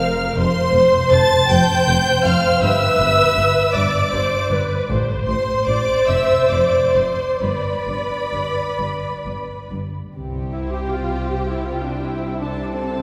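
Classical slow movement for string orchestra in a tender romantic mood, moving in a rubato 6/8, where a rich, focused violin section sings the melody with vibrato over a smooth, even second violin line, an expressive, up-front viola accompaniment with portamento, a lush cello section in the background and a close, bowed double bass section, all set in a wet concert-hall reverb in this short fragment of a longer work.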